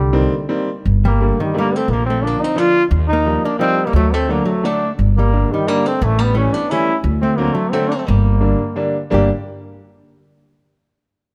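Bittersweet and nostalgic, this brief cut from a longer musette waltz moves at 174 BPM in 3/4 and G minor, with a bright trombone carrying the melody up front with light vibrato, punchy attack and scooped notes, its tone at once solo-forward and roomy. An electric hollow-body archtop guitar, clean, picked and compressed, adds a second line, while a brilliant upright piano with long sustain joins at 0.1 seconds and a growly pizzicato upright bass on steel strings anchors the low end from G1 to Eb2. Close, detailed microphones and light reverb frame a progression that turns from Cm7 through Ebadd9, D, A7 and D7 back to Gm.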